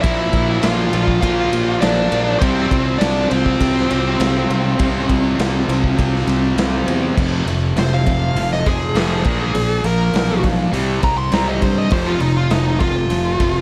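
An overdriven lead guitar with a dark, smooth tone sits up front, carrying the melody through a slapback echo and breaking into a solo at 7.2 seconds that runs to the close of this 13.6-second cut from a longer quiet-loud alternative rock piece. The mood is restless and anthemic, moving at 101 BPM in a straight 4/4 over chords that shift from Bb6 and Csus4 to F, Bb, C5 and back to F. Two thick fuzz guitars grind out a riff beneath it: one very quiet, the other distorted and bright, set in the background. A boxy, picked acoustic guitar with a swing feel adds arpeggios further back, while a fingered electric bass gives a round, fuzz-laden, overdriven low end. The raw garage drum kit, with a punchy kick, medium-tuned snare, hi-hat, ride and crash, has a rolled-off top and the sound of a stone room, all framed in light reverb and studio ambience.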